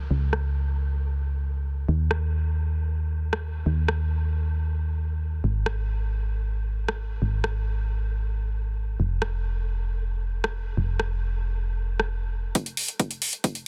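A round, dark FM bass sits up front with a fast attack and decaying notes, pumping under sidechain compression in this emotional, bittersweet uplifting trance cut at 135 BPM in F minor. A layered, overdriven big-room drum kit of metallic hi-hats and rim clicks runs alongside from 0.3 seconds, its hats pumping and filtered, all set in digital ambience under a dense, heavily limited modern master. At 12.6 seconds a punchy, tape-warm electronic kick arrives up front for a brief build-up as the bass drops away.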